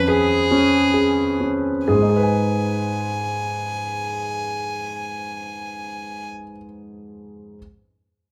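A neoclassical piece for piano and strings, this brief passage cut from a longer work moves at 64 BPM in 3/4 with a rubato feel, sitting in G# dorian and carrying a fragile, melancholic mood. A single bowed violin carries the melody from 0.0 to 6.3 s, ranging from G#4 to G#5, its sul tasto tone warm and soft in attack, pure and floating with a smooth top, set up front and bathed in plate reverb. Beneath it, a dark concert grand piano provides accompaniment from 0.0 to 7.6 s, spanning E#2 to G#5 with a mellow character and deep bass, also placed up front and sitting louder than the violin. The opening stretch slows down through its first 1.9 s over a C#/E# chord before a new section arrives at 1.9 s on G#m, where the piano outlasts the violin to close the passage. The whole is heard in a wet studio room with a short decay, captured as a rough home demo mix.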